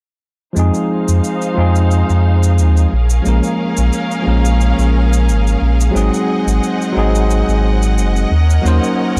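Relaxed and smooth, this sunset chillout excerpt moves at 89 BPM in 4/4 with a light swing, opening with a bright, bell-like tine electric piano at 0.5 s, up front and coloured by tape echo and a low-pass filter. From 0.6 s a lush, bowed symphonic string section holds sustained chords with vibrato, a round, deep sine sub bass sits up front under a filter sweep, and an overdriven, layered electronic cabasa adds texture. The chords move through Fm7, Bbm7, Ab7 and Ebm7, all set in digital ambience with a dry, gritty cassette-tape character.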